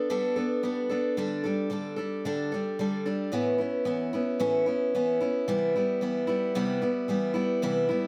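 A picked steel-string acoustic guitar carries this short rock fragment by itself, sitting up front with an auditorium-sized body and a slapback echo that gives each note a quick shadow. Its range runs from A2 up to A4, and the tone is rounded and inviting, in keeping with a warm, nostalgic mood. The straight 4/4 feel moves through a gently colored progression of Gadd9, Dsus4, Aadd9 and Cmaj7, the added and suspended chords lending an open, unresolved sweetness. A light reverb surrounds the guitar with a touch of air. Cut from a longer piece, the passage lasts just over 8 seconds, with the Cmaj7 arriving at 5.5 seconds.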